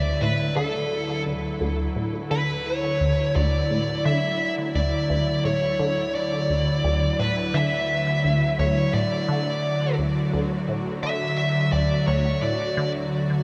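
A straight 4/4 pulse at 86 BPM drives this expansive, luminous stretch of ambient, sequencer-driven space music in D major, cut from a longer piece, where a juicy, squelchy resonant blip pluck repeats a low riff through phaser, analog chorus, 12-bit sampler grit and tape echo, a bright, morphing wavetable pad sustains a Dadd9 chord with ensemble chorus, and an up-front, dark, overdriven electric lead guitar sings a picked melody through shimmer reverb and tape echo, all three sounding from 0.0 seconds inside a huge, wet ambient reverb.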